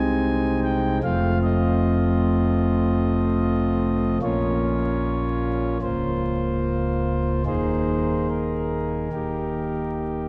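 A dark recording with vinyl crackle and a lingering church reverb frames this serene, majestic classical chorale in straight 4/4, where a solo pipe organ on a smooth principal stop, up front with baroque voicing and a touch of chiff, spans deep bass notes to high treble across a brief passage cut from a longer piece.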